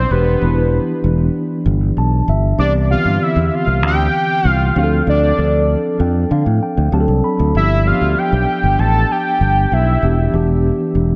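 A straight 4/4 feel anchors this short cut from a polished 1980s jazz-funk pop track, its mood bittersweet yet slick. A fingered electric bass sits up front with a growly, punchy, amped tone, carrying the low end through a harmony that moves from Em7 through Cmaj7, Dm7, D7 and G7 before settling back on Em7. A mellow tine electric piano, clean and lush with chorus, plays the accompaniment and slips in brief fills at 1.7 s and 5.7 s. Above it, a fat analog lead built from detuned sawtooth and square waves with a sub octave carries the melody, full-bodied and sustained, with vibrato, a filter sweep, chorus and a diffuse ambient delay. The lead drops out at 10.3 s while the piano and bass carry on to the close. A moderate plate reverb soaks the mix in a dreamy haze.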